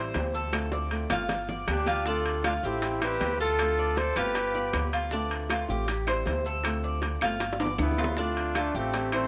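A warm, sunny Latin groove in the Cuban son and guajira style, cut from a longer piece, moves in a straight four-beat feel over a cycling Am7, Dm7 and G7 progression. The Cuban tres picks metallic arpeggios on its doubled strings, while a dark, boxy flamenco guitar plays thumb-plucked accompaniment with audible finger squeak, and a thumpy pizzicato upright bass with steel strings anchors the low end. In the background, round low-tuned bongos, grainy vintage maracas and close, dry woody claves sit beneath ringing metal-shell timbales. At 1.7 seconds a veiled, bucket-muted trumpet carries the jazz-style melody with light vibrato, joined by a clear, pop-style trumpet on a second line with scooped notes, set lower in the mix; both drop out at 4.9 seconds and return at 7.8 seconds. A moderate plate reverb gives the band a shared, glowing space.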